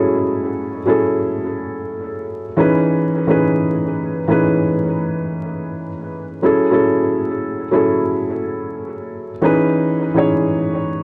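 A felt-muted upright piano plays alone from the start, its soft, intimate tone sitting up front and dulled by a low-pass filter, cassette tape character and tape echo as it moves between F#m7 and C#m7/E. This melancholic, hazy hip hop piece in C# minor moves at a slow 70 BPM in 4/4 with a 66% swing on the sixteenths. The home cassette recording adds light reverb and vinyl crackle to this 11-second cut from a longer piece.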